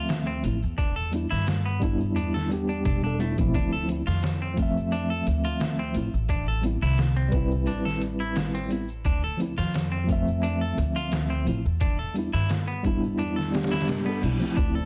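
A mellow tine electric piano opens this melancholic, hypnotic trip hop excerpt, its tremolo and tape echo roughened by vintage 12-bit sampler grit, while a bright, twangy clean electric guitar picks arpeggios through delay and an upright bass plays woody, thumpy pizzicato lines underneath. A sampler-style drum kit, pitched down, compressed and overdriven, adds a gritty, thumpy kick, a medium-tuned snare and hi-hat, with an egg shaker sitting softly in the background. The harmony circles through Dm7, Em7 and Am7 in a straight, steady groove. Near the close the kick drops out at 13.2 seconds, a reverse cymbal rises in the background from 13.6 seconds, and a warbling, nostalgic, lo-fi pad with chorus and built-in reverb appears only at 14.8 seconds, just as the excerpt is cut. The production is dark and warm, with little reverb, keeping the electric piano direct and up front.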